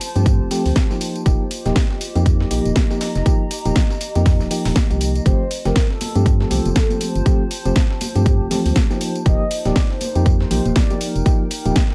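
A swung 120 BPM deep house groove in 4/4 rides on a punchy, up-front electronic kick, a tape-warm house kit with cracking snare, hi-hat and tambourine, and a very quiet, gritty, pitched-up breakbeat kit, under a hollow, dark organ-like FM bass, soft round FM electric piano stabs with chorus, tremolo, tape echo and sidechain pumping, and a warbling, nostalgic tape-like pad moving between G9sus4 and F9sus4, while a mellow horn-like synth lead with phaser, lush chorus, 12-bit grit and delay enters at 5.3 seconds and ringing, high-tuned congas join in the background at 6.0 seconds in this deep, dry excerpt.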